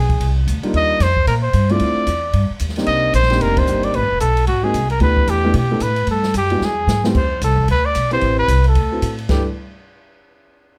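A brisk swung 4/4 pulse drives this relaxed small-group jazz passage, cut from a longer piece. Woody pizzicato upright bass and an open drum kit with dark cymbals and a boomy kick carry the groove, while a breathy, up-front trumpet takes the melody with vibrato, and a concert grand with deep bass comps from 0.6 seconds. A band accent lands at 3.5 seconds and a drum fill at 6.6 seconds leads into the next section, all set in a small, natural room with light reverb.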